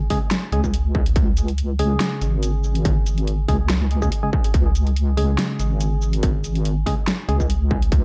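A half-time groove at 142 BPM with a light 16th-note swing drives this brooding, meditative deep dubstep excerpt, where a hollow, gritty organ stab with chorus and dub echo sits over a deep, warm wobble bass, a distorted up-front electronic kick and a tape-warm kit of huge snare, bright hats and shaker, all in a dark production with digital ambience around a C#5 chord.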